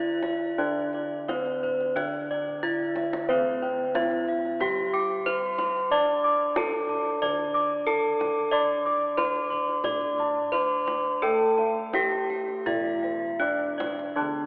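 Javanese gamelan in D slendro moves at a serene, ceremonial 78-92 BPM in a straight 4/4: a ringing bronze metallophone struck with a horn mallet carries the melody up front, boxy and warm, while a mellow, airy metallophone on padded disc mallets gives soft accompaniment beneath it. Bossed gongs with a round, beating, vintage band-limited tone spin arpeggios alongside a bright horn-mallet metallophone, and lower bossed gongs, boxy and round, hold the bass. A tight kendang played with soft hands sits in the background and fills from 2.5 to 3.3 seconds, leading into the second section, all bathed in a long cathedral reverb of 4.7 seconds with a thin telephone-like colour over this fragment of a longer piece.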